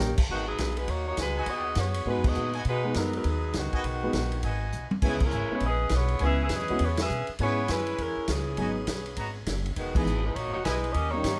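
Big band swing in G# minor moves at a brisk 203 BPM in 4/4, with a dramatic, brassy mood and a light swing feel in this short cut from a longer piece. A vintage drum kit with dark cymbals, a tight kick and a medium-tuned snare sits up front alongside a woody, thumpy pizzicato upright bass, the pair driving the time from the start. The saxophone section carries the melody with vibrato and a loose, vintage section sound, while a grand piano enters at 2.1 seconds to add accompaniment. A clear trumpet section with light vibrato punches in with stabs from a more distant, roomy position. The harmony moves from G#m7 to C#m7 and back, landing on Emaj7 near the close, with band accents scattered through and a drum fill at 4.7 seconds, all captured by close, detailed microphones with little reverb.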